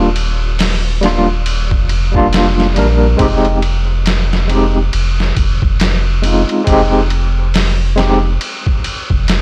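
A barky, gritty overdriven tine electric piano sits up front through a combo amp, its tremolo and tape echo coloring a melancholic, dark trip hop excerpt that moves from Ebmaj7 to Fm9 before the piano drops out at 8.3 s. Underneath, a soft, round dub sub bass holds deep sustained notes, while a muffled, pitched-down sampler-style drum kit enters at 0.2 s with a thumpy kick, medium-tuned snare, hi-hat and ride, its tape-toned, compressed sound re-recorded in a small room. Digital ambience and a swung sixteenth-note feel frame the passage.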